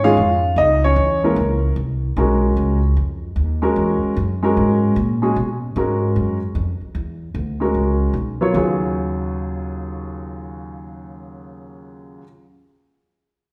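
The recording sits in the lush, wet reverb of a recital hall with a 1.5-second decay, giving the sound the open air of a church or concert hall. This is a late-night, smoky jazz piece in Eb minor at 150 BPM, in 4/4 with a light swing on the eighth notes, tuned to A4 = 438 Hz. Up front, a warm upright piano with a natural tone and long sustain carries the melody from Eb2 to F5. Beside it, a dark, woody upright bass, played pizzicato on steel strings, holds the low end between B1 and B2. Both parts play throughout, and the harmony moves from Eb9sus4 and Dbm through a stretch of Bmaj9, E69 and Bsus2 starting at 2.2 s, then settles onto Ebm11 at 8.6 s. The clip is cut from a longer piece.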